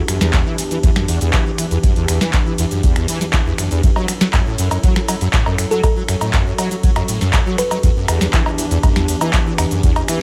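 A dry, close mix carries this hypnotic, raw acid house excerpt at 120 BPM in 4/4, moving from Em7 to F#m7 and back. Up front, a squelchy, resonant sawtooth acid bass riff with filter sweep, tube saturation, chorus and delay sits beside a deep, tape-warm electronic kick and a booming analog drum machine of tonal snare, metallic hats, cowbell, finger snaps, handclaps, ride cymbal and shaker, while a dark, warbling, detuned lo-fi pad holds sustained chords with sidechain pumping. At 5.7 seconds a round, tine-like thumb-piano-like FM pluck adds a brief melody through chorus and delay, stopping at 7.9 seconds.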